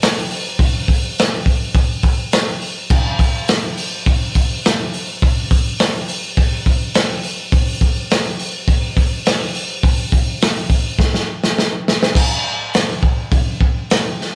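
A straight 4/4 rock beat drives this raw, menacing excerpt, played on a crunchy, saturated acoustic drum kit of kick, snare, hi-hat and crash that sits up front in a studio room with light reverb. The tight kick, medium-tuned snare and dark cymbals carry a gritty, rolled-off top that feels like a band playing live together. A drum fill from 11.0 to 12.2 seconds leads into a new section that runs until the cut at 14.3 seconds.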